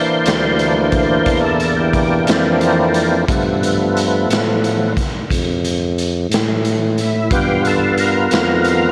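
A slow blues in 12/8 at 60 BPM with a straight feel sets a soulful, gritty mood in this short cut from a longer piece. Up front, a thick, overdriven tonewheel organ takes the solo with sustained chords through chorus vibrato and a slow rotary speaker, moving from C9 to G9 at 3.3 seconds. Beneath it, a tuba with a soft attack and light vibrato carries the bass, while a saturated, dark garage drum kit with a punchy kick and rolled-off top keeps time on hi-hat, kick and snare, all set in a moderate echo chamber reverb.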